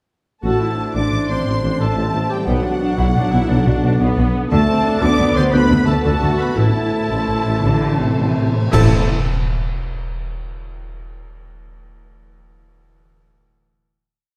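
Rolling in a 12/8 lilt at roughly 109-118 BPM counted in dotted quarters, this complete short cue is a heroic, swashbuckling adventure-film theme in A dorian, moving through Am, Bm and D before returning to Am. A rich, focused violin section carries the tune with vibrato, doubled at the octave by a softer, smooth-topped second violin section in the background and by a mellow, tight French horn section, while a warm clarinet sings a second line beneath. Lush violas add a distant counter-melody and sustained chords, and the bass is anchored by a close cello section playing a driving ostinato and answering at phrase ends, joined by an expressive double bass section and a roomy tuba doubling the line. A very quiet concert harp sweeps ringing, fingerpicked arpeggios throughout and keeps sounding through the final chord until 10.9 seconds. Bright cymbal swells, crashes and bass drum strokes enter at 4.5 seconds, the tempo broadens from 5.2 seconds, and the whole band lands a collective accent at 8.7 seconds. 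The orchestra is heard from further back in a scoring stage with a wet reverb tail.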